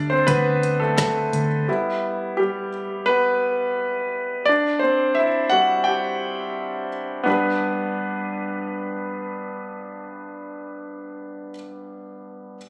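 Captured on a phone in a studio room with light reverb, digital ambience and compression, this excerpt of piano-driven pop in G major moves at 86 BPM in 4/4 with a hopeful, warm mood. A clear, intimate concert grand sits up front with deep bass, long sustain and audible action noise. A dark, round, foam-muted electric bass holds D2 from the opening, and an electronic deep house kit with a deep kick, woody snare and dark hats joins briefly at 0.3 s. Both stop by 1.7 s, after which the piano carries on alone through Dsus4, Em and C before settling on G at 7.3 s, where a new section begins.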